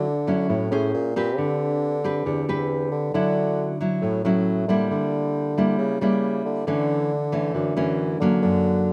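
A dry, open-air sound with little reverb frames this short bossa nova excerpt, cut from a longer piece and moving at 136 BPM in D major with a straight feel. The mood is romantic and breezy, carried by a fingerpicked nylon-string guitar with fresh strings and a classical touch, sitting up front and spanning a generous range as it supplies the accompaniment. Beneath it, a mellow bassoon takes the bass role in a classical style, its light vibrato giving the low line a gentle, singing quality while it also sits up front. Both parts play together from the start through 8.9 seconds. The harmony drifts through rich extended colours, opening on Dmaj9, passing through Bbm9, Cmaj9 and Gm6, and closing on an F# chord.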